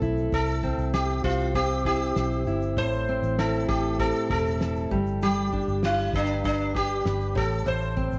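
Acoustic pop at 98 BPM in C major, heartfelt and easy-going, moving through C, Am and G in a straight 4/4 feel within a short clip cut from a longer piece. An up-front, full-bodied fingerpicked jumbo steel-string guitar carries the accompaniment over a round, foam-muted vintage electric bass with a punchy, amped tone, while a dry, cloth-damped drum kit with a fat snare, tight kick and shaker thuds in the background with a rolled-off top. At 0.3 seconds a plectrum-plucked sitar takes the melody up front, with a buzzing tone and shimmering sympathetic strings, and the whole ensemble sits in a moderate echo chamber reverb.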